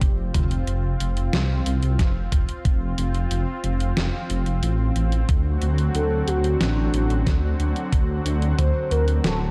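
A thumpy, up-front electronic kick and a detuned 8-bit drum machine with hi-hat, medium-tuned snare and toms set a straight 4/4 synthwave pulse at 91 BPM beneath a deep, rumbling detuned saw bass and a lush, warbling unison pad carrying chorus, 12-bit sampler grit, sidechain pumping and shimmer reverb over chords of F then D7, and at 6.0 s a smooth, expressive portamento lead with vibrato, cassette tape character and tape echo joins them, giving this driving, cinematic excerpt its dark, vintage glow.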